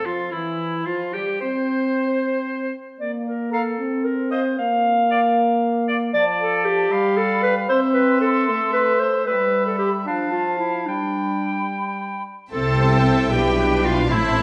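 Classical-period orchestral movement, spirited and graceful in a quick 6/8 at 76 BPM, where a clear oboe, airy hollow flutes and a soft-edged clarinet weave second lines over sustained chords from a roomy, distant horn section before settling into C major, until at 12.5 s the strings arrive with a rich, vibrato-laden violin melody, a gentle sul tasto second violin line, focused violas and smooth cellos above soft-attack double basses, all in a wet recital-hall reverb.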